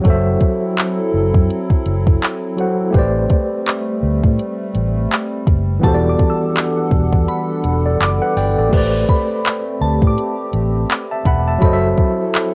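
Late-night and sensual, this contemporary R&B excerpt moves at 83 BPM in 4/4 with a swung sixteenth feel, its chords drifting through F#m7b5, Am11 and Em11 under the light reverb of a home cassette recording. A clean tine electric piano and an electronic smooth R&B kit with a soft kick and metallic hats sit up front, joined by a dark, round, punchy foam-muted fingered electric bass, while a hollow, flute-like pad with chorus holds mellow sustained chords underneath. A glassy FM synth bell with tape echo glints briefly at the start, returns at 5.8 seconds, and the kick drops out between 7.3 and 8.7 seconds.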